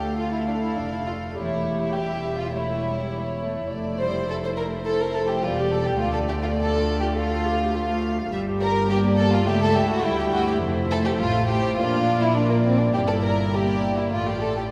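This is a quick, classical-period movement for string orchestra in 4/4, cut from a longer piece, with a cheerful, spirited mood and a rubato feel. From the very start all five sections sound together: violins carry the melody in a high register while a second violin line moves below them, violas fill in the accompaniment, and cellos and double basses share the bass. The violins and violas are bowed sul tasto with soft attacks and light vibrato on the melody and viola parts, giving an intimate, close sound, while the second violins sit up front with a pure, floating tone. The cellos stay distant in the background, and the double basses add a rich, smooth-topped foundation. A church-like reverb with a long 2.8-second tail surrounds the ensemble, and the harmony moves through minor-key chords, including a diminished chord at 9.5 seconds, before settling on Dm/A near 14.1 seconds.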